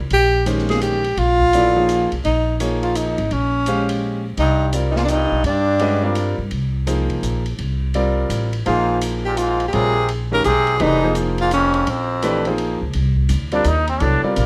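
Modal jazz in a cool, searching 3/4 swing at 168 BPM, cut from a longer piece, where a woody pizzicato upright bass and a dark, smooth open drum kit with boomy kick support a bright concert grand piano, a breathy tenor saxophone carries the melody with subtone and scooped notes, and a nasal straight-muted trombone sounding distant in a moderate studio reverb joins as a second line at 4.4 seconds before taking a brief solo at 12.9 seconds.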